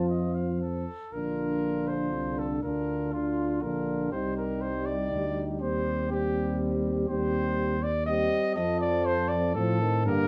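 A light reverb gives this short brass quintet excerpt the feel of a small room, with a warm trumpet and a mellow bass trombone up front and the other voices set back. In a stately, noble 3/4 at 121 BPM with a rubato feel in Bb major, the trumpet carries the melody from F4 to F5 while a distant, roomy flugelhorn adds a second line and a French horn with light vibrato fills in the accompaniment. A trombone with vibrato shares that accompaniment, and the bass trombone anchors the low end as the chords move from F through Bb and C minor to an F7 at 8.6 seconds, in an excerpt cut from a longer piece.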